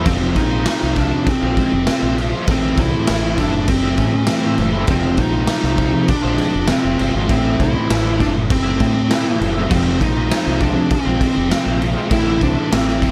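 Psychedelic rock excerpt at 100 BPM in 4/4 with a mysterious, hypnotic mood, swaying between F minor and A minor chords every few seconds. A bright, crunchy double-tracked guitar riff spins through a rotary speaker over a growling, round fingered bass with overdrive, while a fuzz lead guitar traces a narrow melody from C4 to E4. The raw garage drum kit sits up front with a boomy kick, medium-tuned snare and crash cymbal, sounding saturated and gritty with a rolled-off top in a pumping stone room, all framed by small room ambience.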